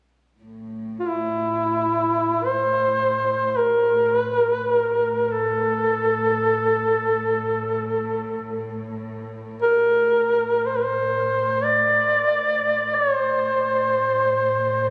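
A bowed string section opens at 0.4 s, holding a low drone on A2 with a woody, lush, close sound and vibrato. At 1.0 s a mellow duduk enters up front as the solo voice, singing a solemn, longing lament in free time in A phrygian, moving between E4 and D5. Its folk-style line has a soft attack, scooped notes, vibrato and a smooth top. The duduk sits well above the quieter string drone. A moderate cathedral-like reverb with a long 6.2-second tail surrounds the sound, yet the recording keeps a phone-in-the-room character with a faint mains hum. Tuned to A4 = 443 Hz, this brief fragment is cut from a longer piece, and both parts carry on to its end at 14.9 s.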